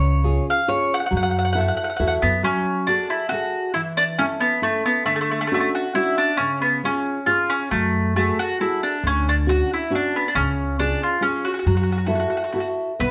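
A round, up-front mandolin carries the melody on picked double strings in this wistful, romantic Italian folk serenade, a fragment in F# minor at 137 BPM in a straight 3/4. Beneath it, a full-bodied classical nylon-string guitar is fingerpicked with audible finger squeaks, while a woody, thumpy pizzicato upright bass plays until 2.4 seconds and returns at 7.7 seconds. The harmony drifts through F#madd9, Dmaj7 and C#, and the band, playing live together in one room, is bathed in a wet, large-studio reverb.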